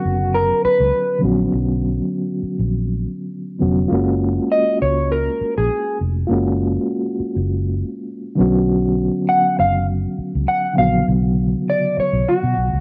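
A lightly swung 16th-note feel at 101 BPM in 4/4 drives this lush, warm 1970s-style soul excerpt, where a dark, slightly broken-up, lo-fi electric guitar through a small old amp carries the melody with analog chorus, cassette tape coloring and plate reverb over a reedy, mellow electric piano with fast tremolo, while a round, punchy, foam-muted fingered electric bass enters at 0.1 s beneath chords moving from Bmadd9 to F#maj9 and back, captured as a home cassette recording with moderate booth ambience.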